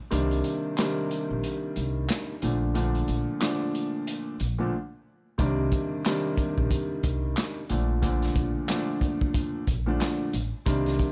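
Dry and gritty, this short cut from a longer boom-bap hip-hop track sits in a small room with a swung sixteenth-note feel and a reflective, moody air. A dark, mellow grand piano with a vintage, cassette-tape tone sits up front on Cm9 and Bbmaj7 chords, while a woody pizzicato upright bass with steel strings and transformer saturation holds the low end. A crunchy breakbeat kit of tight kick, medium-tuned snare, hi-hat and handclaps sounds saturated and mid-forward, with a rolled-off top.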